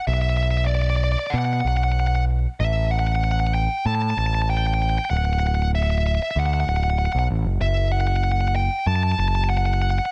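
A growling, amped electric bass sits up front and drives this euphoric, cinematic post-rock fragment, its overdrive giving the low end real grit as the harmony moves from Bm through a rootless Emadd11/A and Dadd9 to F#m. Over it, a dark, smooth overdriven lead guitar carries the melody with a tape echo trailing its picked notes. The sound is dry and close, with little room around either part, in this brief slice taken from a longer piece.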